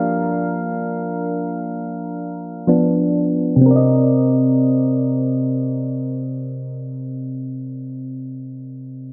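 Soft, round electric-piano-like synth keys with a mellow chorus and low-pass filter carry this moody, longing R&B fragment in free time, sitting up front in a lush hall reverb as they play alone through a filter sweep in the first 3.7 seconds, moving from a rootless Gm7 through Bdim/F to Cm7 before the piece is cut off.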